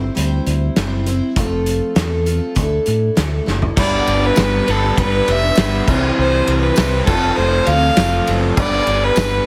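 Folk rock with a heartland rock streak, this open-road fragment moves at 100 BPM in a straight 4/4. A shimmering, octave-doubled twelve-string acoustic guitar plays a full-bodied picked accompaniment, with finger squeak audible, over a dark, round fingered electric bass and a loose indie drum kit with a fat snare and punchy kick in a pumping small room. A drum fill at 3.5 seconds leads into a second section at 3.8 seconds, where the harmony settles into G mixolydian. There, a clear, biting fiddle takes the melody up front, with light vibrato and intense bowing, while a crunchy, double-tracked overdriven guitar adds a bright riff. A jingly tambourine joins in the background at 4.4 seconds, and the whole mix carries light reverb and a heavily compressed radio sound.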